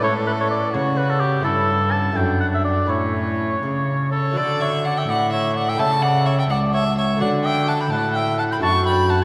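From the first moment, a gut-string violin in period style carries the melody over a clear, lightly vibrato oboe second line, a bright fingerpicked lute with double strings, and a rich, close-miked bowed cello bass in this flowing, serene baroque-style sonata movement in D major, moving at 84 BPM in a straight 6/8 and taken from a longer piece, all bathed in a long, wet church reverb.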